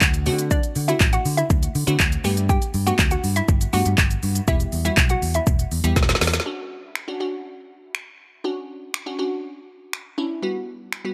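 A carefree, euphoric dance-pop passage opens straight into a drop, with an up-front deep house kit, a dark, round fingered electric bass and a glassy wavetable pluck all sounding at once. The kit layers a deep kick, a woody snare, smooth hi-hats, shaker, finger snaps and handclaps, while the amped bass and the crystalline, nasal pluck both carry sidechain pumping that ties them to the beat. At 0.5 seconds a hollow, bouncy square-wave pluck takes the melody, its detuned, vintage tone warbling through chorus and a dub echo. The accompanying pluck shimmers through chorus, a phaser and a filter sweep over chords moving from D7 through Gadd9 to Em. A drum fill at 6.0 seconds leads into a second section where the bass has dropped out by 6.4 seconds, leaving the kit and the bright wavetable pluck to carry the shift to Dmaj7 and Gmaj7. The mix is dry, with little reverb, and the passage is cut from a longer piece.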